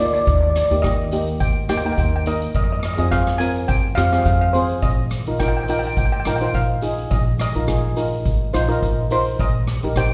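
The recording sits in the moderate reverb of a recital hall, giving this short fragment of a longer calypso a resonant, church-like space. In Eb major at 105 BPM with a light swing on the sixteenths, the mood is carefree and sunny. A lead steel pan struck with hard rubber sticks carries the melody in a bright, shimmering, up-front tone. A double seconds pan played with soft rubber sticks supplies a mellow, slightly vintage, band-limited accompaniment. Underneath, a pizzicato upright bass with steel strings sounds woody and growly, and a street-band drum kit of hi-hat, rim click and boomy kick arrives at 0.1 seconds with a polished, big-room sound. A grainy, compressed tube shaker joins in the background at 0.3 seconds, as the harmony moves from Eb through Fm and Bbsus4 before settling on Eb/Bb.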